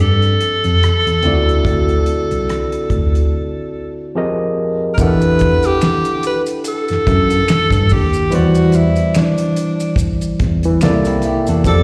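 Heard as a live gig through the venue's PA with recital-hall reverb, this soulful, smooth neo-soul R&B excerpt in E minor at 72 BPM, with a 16th-note swing, sets a breathy tenor saxophone melody with light vibrato and scooped notes up front over a barky, lightly overdriven tine electric piano, a clean tine electric piano bass, and a dry, dark 70s drum kit with a fat snare and tight kick. A break runs from 3.3 to 5.0 seconds, before compressed, saturated maracas and finger snaps enter at 5.0 seconds and a dark, slightly broken-up picked electric guitar adds a second line at 11.1 seconds, with slapback echo on the saxophone, barky electric piano, drums and guitar.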